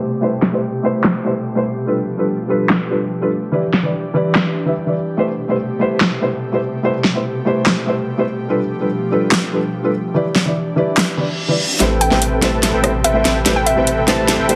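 This dreamy, lush future bass excerpt moves at 145 BPM in 4/4 with a half-time feel, sitting in A minor over a cycle of Am9, G9 and Em7 chords. An airy, breathy pad with chorus holds sustained chords from the start, while a felt-muted upright piano, soft and intimate with audible action noise and a boxy tone, plays up front through a tape echo. A dubstep drum kit of handclaps, hi-hat, rim click and snare is layered and prominent, with a huge, high-pass filtered snare and metallic hats, as a filter sweep runs across the opening stretch. A reverse cymbal and riser enter at 11.2 seconds, and at 11.8 seconds the build-up begins with a drum fill, a deep, saturated sub bass on A1, and a smooth, detuned supersaw riff carrying 12-bit sampler grit and its own filter sweep. A hollow, bouncy square pluck with chorus and tape echo adds a brief melody between E5 and G5, all set in a moderate digital room reverb with a heavily compressed, radio-like sound.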